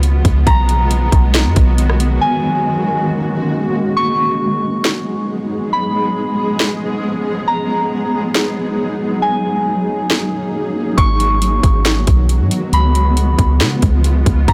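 Atmospheric cloud-rap in a half-time hip hop groove, ethereal and melancholic, built on a blurred, detuned granular pad that holds sustained chords with its own reverb and pumps against the beat. A pure, gentle FM bell carries the melody from 0.5 seconds through chorus, delay and a low-pass filter, while a round, dark 808-style bass and an up-front electronic trap kit with hard-clipped kick, sharp snare, metallic hats and rim click drop out for a break, the drums returning at 4.8 seconds and the bass at 11.0 seconds. The dry, blown-out recording sounds heavily overdriven throughout.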